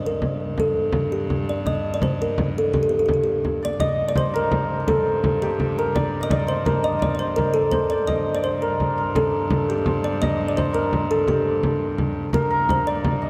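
Dark production and a long cathedral reverb give this excerpt from a medieval dance in G minor an ancient, driving character at 112 BPM in a straight 6/8. An up-front kalimba carries the melody with short, woody thumbnail plucks over a clear, reedy viola da gamba drone on G2, bowed with light vibrato and a biting gut-string tone, while a deep frame drum played with soft hands enters at 0.2 seconds, sitting close and dry. At 3.6 seconds a bright, shimmering hammered dulcimer joins with a ringing second line in the same range as the melody.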